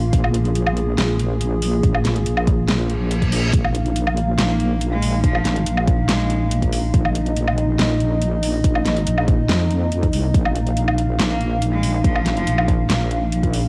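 Heavy and cavernous, this deep dubstep excerpt moves at 141 BPM in a half-time feel, built over a single Bb chord, with a dark, detuned analog pad holding sustained chords through chorus and cassette-tape color while a saturated, up-front wobble bass carries the low end. An electronic kick drum and a layered kit with a huge snare, metallic hats and woodblock carry a warm cassette-tape grain, and a reverse cymbal rises at 2.9 seconds. A clear, bowed cello with light vibrato sits in the background at 4.5 and again at 11.3 seconds, trailed by dub echo in a lightly reverberant, home-recorded cassette sound.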